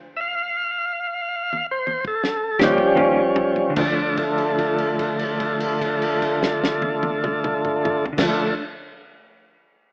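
A slowing 12/8 slow-blues sway opens this mournful, smoky fragment on a thick, lightly overdriven tonewheel organ that takes the solo with sustained chords through a slow rotary speaker, while a dry, muffled soul drum kit with dark cymbals enters with a fill at 1.5 seconds, a compressed, clean picked electric guitar with tremolo and a distant bowed double bass deep in the background join at 2.6 seconds, and a held note carries from 3.8 seconds, all wrapped in plate reverb and the rough, AM-radio character of a home demo.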